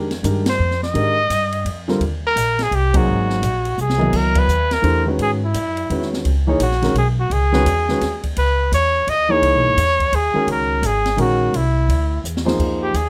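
A lightly reverberant modal jazz recording, cut from a longer piece, feels searching and hypnotic at a brisk 170 BPM in a swung 3/4, moving from F dorian to C# dorian at 4.1 s. A breathy, up-front trumpet with vibrato carries the solo melody from 0.5 s over a warm, natural grand piano accompanying on chords from Fm7, Cm7 and Ab7 to C#m7 and F#sus2, with woody, dark pizzicato upright bass on steel strings. The open acoustic drum kit sits lower in the mix, with dark cymbals, a high-tuned snare and a boomy kick, joining the band accents and playing fills, one leading into the key change.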